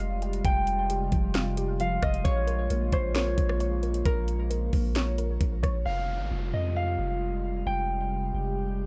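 A dry, gritty recording with little reverb carries this melancholic, ethereal cloud-rap excerpt in F minor at 133 BPM, set in a half-time 4/4 feel over Fmadd9 and Bbm7 chords. Up front, a mellow, fingerpicked concert harp carries the melody through a low-pass filter and tape echo, while a deep sine 808 bass sustains beneath a nostalgic, detuned square-and-triangle pad with sidechain pumping, chorus and its own reverb, and a dusty sawtooth pluck arpeggiates in the background until 5.9 seconds. A trap kit with knocking kick, sharp snare, metallic hats and rim click drives the opening, stopping at 5.7 seconds before an electronic downlifter closes the clip.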